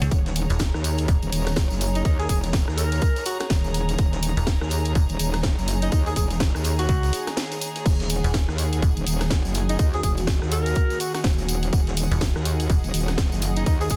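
A saturated, chorused wobble bass growls up front through this gritty, swaggering bass house excerpt in Eb minor at 124 BPM, pumping against a tight, layered electronic kick and a garage kit with cracking snare and bright hats, while a metallic FM bass cuts in and out with fast-attack, decaying tones. A mellow, distant alto saxophone enters at 2.0 seconds with vibrato and digital delay, floating over dark, bowed strings played sul tasto, a very quiet evolving sawtooth pad and a jingly tambourine. A hushed vintage acoustic kit sits far beneath, and a brief break at 7.4 seconds interrupts the dense, heavily limited groove.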